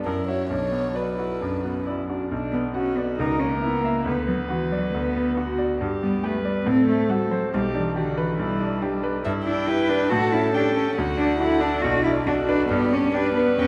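A quick, spirited classical-period piano quartet movement in B minor at 138 BPM, cut from a longer piece, where a dark, intimate violin carries the melody with light vibrato and an airy sul tasto bow, a close cello supplies a smooth second line, a distant, floating viola fills in the accompaniment, and a brilliant, up-front concert grand with deep bass drives the cheerful harmony from F#7 through Bm, G and A7 to D, all within a recital hall's 1.5-second reverb.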